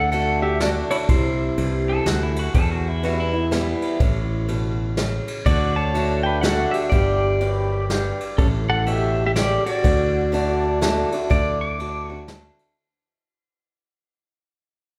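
Down-home and sunny, this honky-tonk and classic country fragment in waltz time sets an up-front pedal steel melody, played with fingerpicks, slide and volume swells, over a bright, boxy swing-picked acoustic guitar, a round, punchy fingered electric bass and a vintage brush kit with dark cymbals, while a twangy, slightly broken-up electric guitar through a small old amp adds a brief second line from 1.9 seconds, a mellow tonewheel organ with key click and slow rotary speaker sits in the background with a fill at 7.4 seconds, and the whole ensemble, bathed in a wet, church-like recital-hall reverb, fades out from 11.3 seconds.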